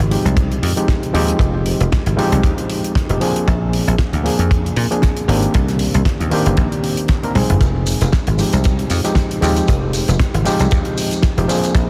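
A gritty, barky electric piano, overdriven through a combo amp and sitting up front, carries this groovy, sensual nu-disco excerpt, its reedy chords pumping under sidechain compression and trailing a delay. Beneath it, a dry thumbed slap bass sounds punchy and foam-muted, planted firmly in the low register from F1 to Bb2. A damped 70s drum kit with a fat snare, hi-hat, shaker and toms gives a dark, rolled-off backdrop, and a smooth, punchy kick joins at 0.4 seconds. The tempo sits at 116 BPM in 4/4 with a light swing on the sixteenths, moving through Fm9, Bb9 and Cm9 in F dorian before returning to Fm9 at 7.6 seconds, just after a brief drum fill. Light reverb and a small room ambience frame the close, intimate mix of this 11.9-second fragment cut from a longer piece.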